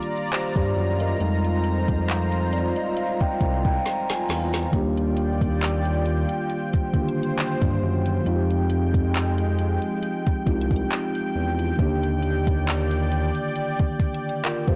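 A slow 68 BPM pulse in 4/4 with a light 16th-note swing drives this moody, sensual contemporary R&B piece in F dorian, cut from a longer track. The electronic drum kit sits up front with a soft kick, woody snare, metallic hi-hats and handclaps, all carrying a tape-warm, produced character, and it plays a short fill at 3.8 seconds. A mellow, clean tine electric piano supplies the accompaniment through its built-in speakers, adding a fill starting at 2.1 seconds, while a vintage analog pad holds slow-attack chords with a warbling, detuned sawtooth tone, chorus and sidechain pumping. Entering at 0.6 seconds, an up-front synth bass blends sawtooth, square and triangle waves into a smooth, nasal sound with a fast attack, sustained notes and vibrato. The harmony moves between Ebmaj7 and Fm9, and the whole mix is dry and blown-out with overdrive.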